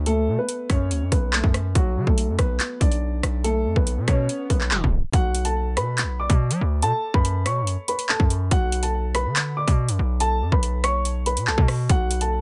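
A dark, boxy concert grand piano carries the melody through a low-pass filter and tape echo, over a distorted, saturated, heavy 808-style bass with a noise layer, opening this ominous drill hip hop fragment in B minor at 142 BPM with a half-time feel. A drill drum kit sits up front with a hard-clipped kick, metallic hi-hats, handclaps and rim clicks, while an electronic swell sits in the background from 3.9 s and a tape stop hits at 4.7 s before the harmony moves to Bm7 at 5.1 s. The mix is dry, with a dulled top end.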